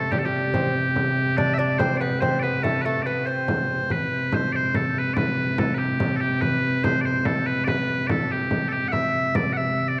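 Piercing, bright bagpipes carry the melody up front throughout this rustic, ancient-sounding medieval dance in a straight 6/8, cut from a longer piece. A rich, lightly vibrato viola da gamba holds a ringing bowed drone beneath, while a deep frame drum keeps the pulse and a delicate fingerpicked lute with gut strings adds a second line until it drops out at 3.9 seconds. The whole sits in a dark production with a wet concert hall reverb.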